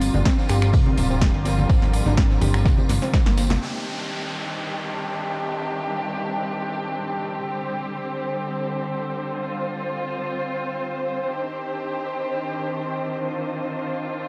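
Veiled, con sordino strings hold dark sustained chords up front through the whole 14.3 seconds of this driving, expansive progressive house excerpt at 125 BPM in C minor, pumping against a punchy overdriven electronic kick, a fat detuned analog bass, and a soft round pluck playing arpeggios through lush chorus and dub echo. A big-room dance kit with finger snaps, crisp hats and a punchy snare, a very quiet gritty sampler-style kit with ride cymbal, ringing congas and a distant jingly tambourine fill out the groove until a drum fill and a band accent at 3.5 seconds close it at 3.6 seconds. From there the strings carry on in a moderate hall reverb, joined by a downlifter until 7.5 seconds, moving from Cmadd9 to Gsus4 and back.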